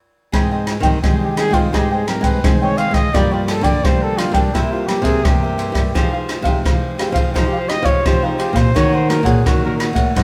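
Samba and choro in a nostalgic, bittersweet mood, this excerpt from a longer piece features a mellow trumpet soloing with vibrato in a jazz style, entering at 1.2 s over a chord progression that moves from Abmaj7 through Gm7, C7 and Fm9 to Ebm7. Beneath it, a crisp picked cavaquinho and a small fingerpicked nylon-string guitar with fresh strings share the accompaniment, while a second, full-bodied nylon-string guitar carries the deep classical bass in the background, its finger squeaks audible. Up front, an open jazz drum kit with a boomy kick, dark ride cymbal and rim clicks sits in a moderate stone-room reverb, with the band playing live together in one room.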